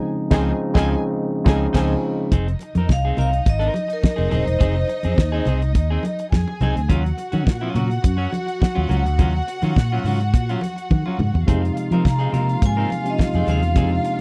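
A glamorous, danceable disco groove at 105 BPM opens with a band accent over a Dbmaj9 chord, voiced by a worn, slightly out-of-tune tine electric piano heard up front through its built-in speakers. From 0.3 seconds the damped 70s drum kit sets a straight 4/4 pulse with a fat snare and tight kick under a rolled-off top, while a growly, amped fingered bass sits up front and a dark, picked clean electric guitar fills in the accompaniment. A lush, woody violin section carries a bowed second line with vibrato throughout, and very quiet, band-limited congas join at 2.3 seconds as the harmony moves through Fm7 and Ebm9. A bright, airy vibraphone struck with hard mallets rings out the melody in two short phrases, and after a drum fill the electric piano returns at 11.5 seconds on Fm7. The dry, close, 1970s-style studio sound keeps every part present in this excerpt cut from a longer piece.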